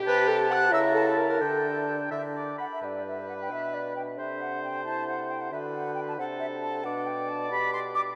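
Spirited and cheerful, this short excerpt from a quick classical-period movement for wind quintet moves at 90 BPM in 6/8 with a rubato feel, set in G major. The airy concert flute carries the melody high above the ensemble, its straight tone and soft attack sounding mellow and distant, while the oboe adds a second line with gentle vibrato and a roomy, up-front presence. Beneath them, the dark clarinet and the clear, present French horn fill in the accompaniment, and the bassoon anchors the bass with a soft-attacked, lightly vibrato tone. The harmony drifts through colourful chords such as C#m6 and suspended D chords before settling on G around 2.8 seconds, where a second section begins and later moves through D toward G/B near the close. Everything sits in a vast, echoing cathedral space, with a long, wet reverb.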